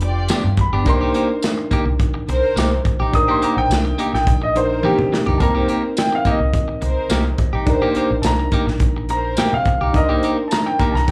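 Straight-eighth soul blues in C minor at 106 BPM, this smoky, mournful excerpt heard live through a club PA puts a gritty, saturated breakbeat kit and a round, foam-muted fingered bass up front beneath an overdriven, reedy electric piano and clean, scooped guitar stabs, both carrying slapback echo, while a distant bowed string section holds dark sustained chords in the background and a woody upright piano, also echoed, enters at 0.6 seconds to solo over G7 and Cm7, with a drum fill arriving at 4.8 seconds.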